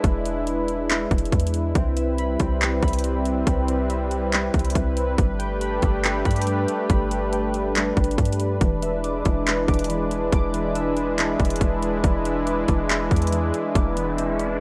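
A rough home-demo mix with light reverb frames this short cut from a longer piece of atmospheric cloud-rap, blissful and dreamy at 140 BPM in a half-time 4/4 feel. Up front, a vintage analog pad of detuned sawtooth voices holds slow-attack chords through chorus and sidechain pumping, moving through E7, Cmaj7, Gadd9 and back to E7. Beneath it sits a clean, deep 808-style bass, a dark, boomy sine with a fast attack that decays. The electronic trap kit is equally forward, overdriven, with a hard-clipped kick, bright hi-hats and handclaps. From 1.8 seconds, nostalgic lo-fi synth keys of pulse and sawtooth tones warble in the background, playing evolving arpeggios shaded by chorus, a low-pass filter and digital delay. A faint electronic riser arrives at 13.7 seconds.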